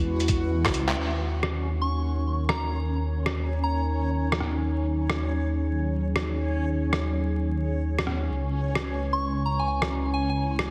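Future garage at 131 BPM in Eb phrygian, this wistful, rainy fragment of a longer piece swings its 16ths and moves from Dbm7 to Ebm7 before returning to Dbm7 at 8.3 seconds. A warbling, nostalgic pad of sustained chords pumps against the sidechain with chorus and its own reverb while a filter sweep runs across it from 1.0 seconds, and a dark detuned saw bass rumbles deep and up front, its unison voices beating. A reversed, granular texture swells dreamily and bright at a low level. The lo-fi sampler-style kit enters at 0.2 seconds with cabasa, handclaps, hi-hat and rim click, all muffled through low-pass filtering, and a thumpy electronic kick appears briefly from 0.3 to 0.7 seconds as a drum fill begins, ahead of a band accent at 0.9 seconds. A soft, pure FM bell carries the melody in two phrases, adorned with chorus, phaser and tape echo. The whole mix sits in a lush hall reverb with heavily compressed radio-style sound and vinyl crackle.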